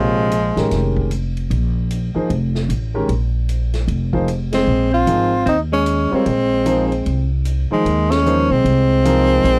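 A clear, up-front tenor saxophone carries the melody in this spiritual, hypnotic modal jazz excerpt in Bb dorian, swinging at 151 BPM in 4/4. It plays with vibrato and scooped notes, and a softer, lighter-vibrato alto saxophone adds a second line beneath it. Both horns sound briefly at the opening, drop out at 1.0 seconds, and return together at 4.5 seconds on a band accent, with another accent landing at 8.1 seconds. Underneath, a polished, warm grand piano with long sustain accompanies throughout, while a woody, thumpy pizzicato upright bass on gut strings sits up front. A distant, roomy big-band drum kit enters moments in, with punchy kick, medium-tuned snare, hi-hat and ride cymbal and a rolled-off top. The harmony moves from Bbm7 to Ab in a dry sound with little reverb.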